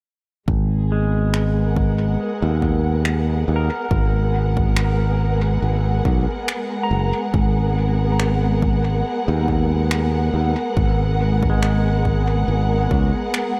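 At 0.5 s a dark, lush bowed string section with a gritty 12-bit sampler edge sustains a G#m7 chord over a bright, growly fingered electric bass and a punchy, overdriven electronic kick. At 0.9 s clean pedal steel guitar arpeggios join, played with fingerpicks and slide through tape echo, and at 1.3 s overdriven electronic finger snaps with dub echo come in. Together they form a meditative, hazy ambient dub groove in G# minor at 70 BPM with a light swing, light reverb and digital ambience, cut from a longer piece.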